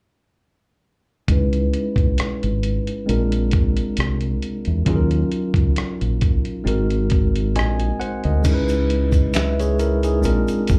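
R&B with a neo-soul lean, this introspective, soulful excerpt sits at a slow 67 BPM with a gently swung 16th feel, as a clean tine electric piano, heard through its built-in speakers with a low-pass filter sweep and slapback echo, moves through C#m9, A#7, D#m7 and G#7 alongside a dark, round, punchy fingered bass and a gritty, compressed sampler-style drum kit with a thumpy kick, medium-tuned snare, rim click, hi-hat and crash. At 8.4 seconds a distant tube shaker with finger snaps and group handclaps joins in the background, carrying its own slapback echo. The whole cut has the feel of a live club gig heard through the venue's PA, with a light room reverb around the up-front keys, bass and drums.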